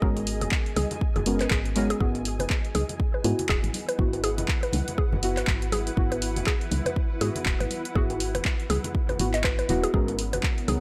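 Deep house with a warm, smooth mood and a swung groove, taken from a longer piece and built around a G#m11 chord that moves to Esus2 before returning. A punchy, layered electronic kick drives the track, joined from 0.2 seconds by a tape-tinged analog drum machine playing handclaps and hi-hat, with ringing bongos and congas struck by soft hands sitting in the background. Underneath, a woody, round FM bass with tube saturation pumps along with the rest of the mix, while deep, full-bodied chord stabs with a filter sweep, chorus and analog delay carry the harmony. A mallet-like FM pluck traces percussive arpeggios in the upper register, and a cloudy, blurred granular pad drifts quietly behind everything with its own reverb. At 10.3 seconds a moody, detuned ambient pad enters with sustained chords just before the cut, and the whole mix has a dry, gritty hardware character with light digital ambience.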